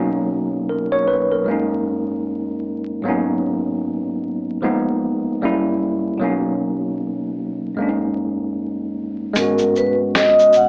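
A worn, slightly out-of-tune tine electric piano, lightly overdriven and up front, carries this hazy, melancholic lo-fi hip hop excerpt alone at 76 BPM in G# minor over lush jazz chords from Bmaj9 to G#m7, until at 9.4 seconds a mellow, ringing vibraphone with slow motor vibrato takes the melody while a woody pizzicato upright bass sits in the background and a gritty, compressed sampler-style kit of finger snaps, hi-hat, shaker and fat snare adds a swung pulse, all wrapped in small-room reverb, vinyl crackle and an AM-radio tone.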